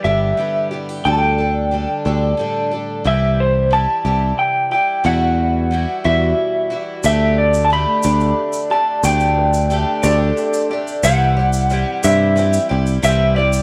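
A lo-fi, slightly broken-up electric guitar with tremolo carries the melody from the opening, up front and compressed, over a shimmering, octave-doubled twelve-string acoustic, a round, dark picked electric bass, and a full-bodied fingerpicked steel-string guitar tucked in the background. This is anthemic, nostalgic indie folk in a straight 6/8 with a building arrangement, moving through chords such as G6, Dsus4, C and Emadd9. The fingerpicked acoustic drops out at 5.1 seconds, leaving the boxy parlour twelve-string and the direct bass to hold the accompaniment. At 7.0 seconds a very quiet upright piano, clear yet worn, woody and slightly detuned, joins alongside a grainy, bright egg shaker that sounds distant, as if in a large room. Light reverb and a small room ambience surround the ensemble, and the piece is cut from a longer work.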